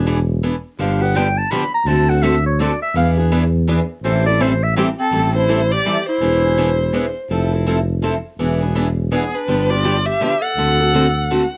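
Close, detailed microphones and a light room reverb give this short, bittersweet jazz manouche excerpt an intimate, present sound. It swings at 166 BPM in 3/4, in A minor, with a virtuosic edge. A dark, up-front tuba carries the bass from the start with soft-attacked, scooped notes and light vibrato, and a boxy parlour-style steel-string guitar with fresh strings picks a bright accompaniment, joined by a second picked guitar further back with audible finger squeak. A breathy clarinet with a vintage subtone takes the opening solo from 0.8 seconds. A bowed violin, warm and expressive with portamento and a plate reverb, carries the melody up front from 4.8 seconds into the second section. The clarinet returns at 9.1 seconds as a second line alongside it. The harmony moves through E7, G7 and D7, touching Am7, E7b13 and Fmaj7 along the way.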